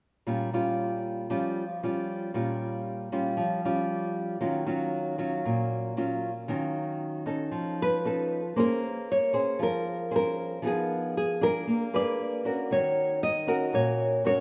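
Wistful and intimate, this bossa nova excerpt in B-flat minor moves at 116 BPM in a straight 4/4, with a fingerpicked nylon-string guitar laying down classical-toned accompaniment through rich chords such as Bbm6, Ebm9 and Faug7. At 7.8 seconds a second fingerpicked nylon-string guitar enters with a small, warm melody in its upper register as the harmony turns through Bbm9, Fm7b5 and Bb7b9 toward Ebm7. Both guitars sit up front in a rough home-demo mix, bathed in a lush, moderate hall reverb.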